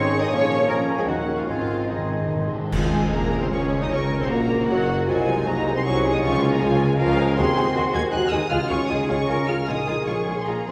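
A fast, dramatic yet cheerful and graceful romantic orchestral passage in 3/4 at 155 BPM in Db major opens with lush, vibrato-laden violins carrying the melody over a second violin line with expressive portamento, airy flutes, oboe, clarinet and clear bassoon that drop away by 2.5 seconds, while violas, cellos, double basses, mellow French horn chords and ringing fingerpicked harp arpeggios continue throughout, bright cymbals with a swell and bass drum enter at 0.3 seconds, round soft-mallet timpani fill, and a distant tuba joins the bass from 2.7 seconds along with a full-ensemble accent, all in a reverberant hall with rubato phrasing.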